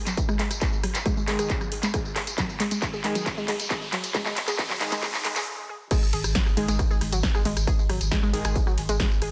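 A dense, heavily limited mix with light digital ambience carries this intense, industrial peak-time techno cut, where a distorted, up-front kick and a punchy analog drum machine full of claps, hats, rides and tambourine drive a filter-swept build-up of a warbling, lo-fi detuned pluck riff, airy supersaw stabs and a background riser, then break at 5.5 seconds before the drop at 5.9 seconds brings in a thick, saturated sub bass pumping beneath it all.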